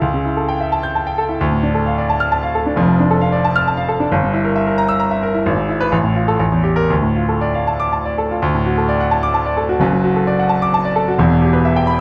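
A clear, present baby grand piano plays alone and up front throughout this stormy, passionate classical piece, a virtuoso study in 3/4 whose elastic rubato pushes and pulls the pulse as it ranges from deep bass to high treble. Light reverb and a dark production frame the playing, and at 8.4 s the music turns into a new section that carries on until the passage, cut from a longer work, breaks off at 12.0 s.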